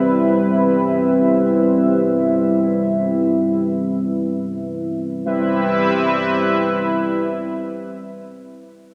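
In free time, this romantic, dreamy synthwave fragment floats on a single chorused pulse-width pad holding sustained chords from a Cmaj7, its shimmering, retro, detuned tone sitting bright and up front with a slow attack, a filter sweep running through its first 5.3 seconds, and the whole mix soaked in a lush hall reverb.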